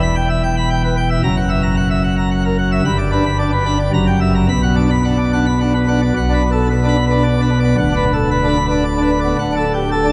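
Classical organ toccata in 3/4, majestic and jubilant: a solo pipe organ on full plenum with brilliant mixtures, baroque voicing and audible chiff sits up front across a range from D1 to B5, its harmony pressing through F#7b9 to settle on Bm at 4.5 seconds, all bathed in a long, wet church reverb within a dark production, in a brief passage cut from a longer piece.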